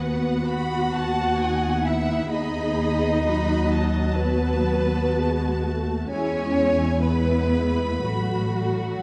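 Classical music for string orchestra, this slow romantic movement unfolds at 56-66 BPM in 4/4 with a rubato, lyrical and tender feel, cut from a longer piece. A rich, focused violin section carries the melody between F#5 and B5 with vibrato, while a second violin section plays a soft-attacked sul tasto line, intimate and close. A lush viola section adds expressive accompaniment, and a cello section with portamento pairs with a dark, up-front double bass section with a smooth top to form the bass. All five sections play together through the full 9 seconds, moving from B/D# through B7/D# to E at 6.1 seconds and F#m/A at 8.0 seconds. A moderate concert hall reverb surrounds a dark, warm production that keeps everything below 11 kHz.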